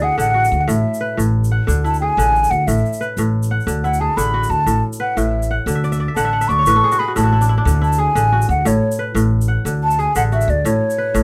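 Lightly reverberant and close, this joyful cut from a longer West African traditional piece in a straight 12/8 sets an airy, hollow wooden flute melody with vibrato up front over ringing, crisp fingerpicked kora arpeggios, a growly, woody pizzicato upright bass and a faint, grainy tube shaker entering at 0.2 seconds, as the kora breaks into a fill from 5.7 to 7.7 seconds.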